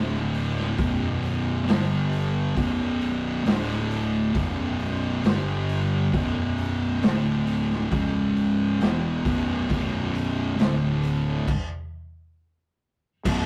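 A rough rehearsal-room recording with light reverb gives this brooding, ominous stoner and doom metal fragment, cut from a longer piece, a close and unpolished feel. A thick fuzz guitar sits up front playing a heavy, distorted riff in a straight four, shadowed by a second fuzz guitar mixed very quiet beneath it. Down in the background, a fingered electric bass adds an overdriven, growly low end. The raw garage drum kit, with crash, hi-hat, snare and a punchy kick, sounds saturated and gritty, with a rolled-off top and a small-room darkness. The riff cycles through power chords built around D, B, G and C# until a stop at 11.5 seconds breaks the groove, and a bright, double-tracked sludgy guitar slips in faintly at 13.2 seconds just as the fragment ends.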